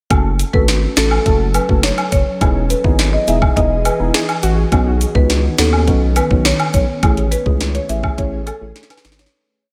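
Dancehall at 104 BPM in F# dorian, tough and hypnotic, built on an up-front electronic afro-pop drum kit with a knocking kick and sharp snare, a thick saturated sub bass with slides, dark detuned chord stabs under chorus and phaser, an ethereal airy pad with sidechain pumping in the background, syncopated woodblock and cabasa, and a woody marimba hook with analog delay, while a soft round pluck appears briefly at 4.1 seconds before the piece fades from 7.0 seconds into a closing drum fill at 8.8 seconds.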